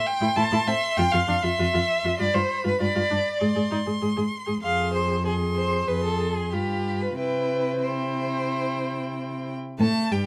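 Up front in this string quartet fragment is the second violin, a single bowed player whose expressive line, colored by vibrato and portamento, sits between G4 and A5. Above it, the first violin carries the melody from G5 to C6 with a rich, smooth and even tone, sounding softer than the line beneath it. The viola and cello both enter at 0.2 s: the viola supplies an even, warm accompaniment with a smooth top, while the cello anchors the bass from F2 to C3 with a dark, woody voice, vibrato and portamento, placed up front. The quick classical-period movement in 4/4 moves at roughly 91-100 BPM with a rubato feel, graceful and spirited in mood. The harmony in C major passes from Am through G7 to a shadowed turn on Ab and Fm before resolving to C at 7.2 s. Light reverb gives the quartet a touch of space, and the passage is cut from a longer piece.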